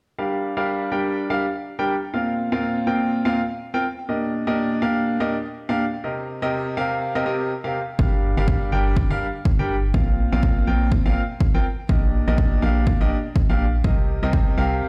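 Piano house with a bittersweet, soulful mood, cut from a longer piece and set in a swung 4/4 groove. A clear, up-front grand piano carries the riff from the opening at 0.2 seconds, its chords moving through Gm7, Bbsus2, Ebmaj7/Bb and Cm7, shaped by sidechain pumping, a low-pass filter and delay. At 8.0 seconds a punchy, tape-warm electronic kick drum arrives alongside a hollow, organ-like FM bass whose dark, percussive notes decay and share the piano's sidechain pumping. The chord cycle repeats once the low end joins, so the second pass feels fuller than the first. The whole track sounds as if played on a big sound system in a bare stone room, with light reverb adding to the space.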